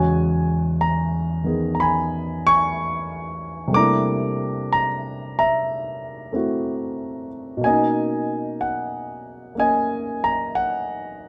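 A lilting swung eighth-note feel carries this brief, playful solo jazz fragment, cut from a longer piece and lasting 11.3 seconds, in which a warm, up-front concert grand piano with deep bass and short sustain moves from E6/9 through C13 to a closing Bmaj9, all wrapped in light reverb.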